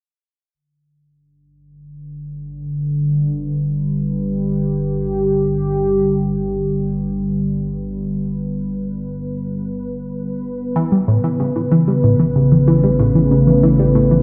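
A steady, straight 94 BPM pulse in 4/4 carries this cosmic, luminous ambient excerpt in G lydian, where a sweeping, resonant sawtooth pad with a filter sweep holds sustained chords over an evolving, pulse-width-modulated analog drone bass that fades in, until a tight, driving, nasal sequenced synth riff with tape echo arrives up front at 10.8 s as the harmony moves from G to Aadd9, all bathed in a wet scoring-stage reverb and the warbly pitch drift of worn cassette tape.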